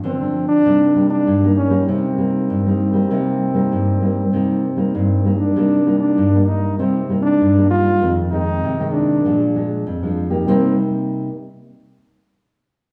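A nylon-string guitar opens this brief samba passage, cut from a longer piece, thumb-plucked in a classical manner with a dark tone and the crisp ring of fresh strings. A trombone enters almost at once, carrying the melody as a jazz-style solo that is mellow yet punchy and forceful, with scooped notes that lend it a yearning, nostalgic ache. Both instruments sit up front, the trombone close-miked, while a large studio reverb adds a lush tail that seems heard from further back in the room. The harmony moves from a rootless G7 into Cm7, then through Fm7 and Bb7 before settling back on Cm7. The trombone falls silent at 10.8 seconds and the guitar at 11.3 seconds, leaving the reverb to linger briefly.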